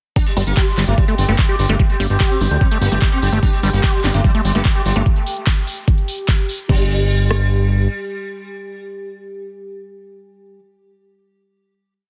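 A bright, buzzing sitar with shimmering sympathetic strings repeats a riff over a pedal note through a phaser and delay, carrying this hypnotic, driving psychedelic trance piece and ringing on from 6.7 seconds as a final held note. Beneath it, an up-front four-on-the-floor kick with rim clicks and overdriven hats, claps and crash from a drum and bass kit push the groove. A fat, detuned galloping analog bass and a squelchy, resonant acid line with slides drive alongside them, a gritty chorused drone holds a high note in the background from 0.9 seconds, and a brief, very quiet metallic FM wobble bass surfaces at 4.1 seconds, all in a dense, dry, heavily limited mix.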